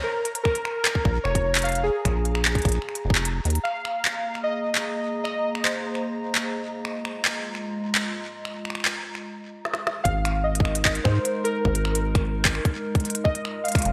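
A warbly, lo-fi synth keys melody opens this glitchy, playful IDM piece in Ab major at 150 BPM, carrying chorus, gritty 12-bit sampler character and digital delay, while a grainy, flickering texture sits in the background with its own reverb. An organic electronic drum kit of finger snaps, handclaps, crisp hi-hat and a woody snare comes in almost at once, up front and tape-warm with a large-room sound. It is joined by a tight electronic kick and a rubbery, resonant acid bass with a dark square-wave pluck. Around 4.1 seconds a detuned, nostalgic pad enters with slow-attack sustained chords, mellow under chorus and reverb, as the chords pass through Absus2 and Fm7. After a drum fill, the kick and bass return alongside the melody at 10.1 seconds for the closing stretch. The brilliant 1980s-style digital production is bathed in moderate plate reverb, and this excerpt is cut from a longer work.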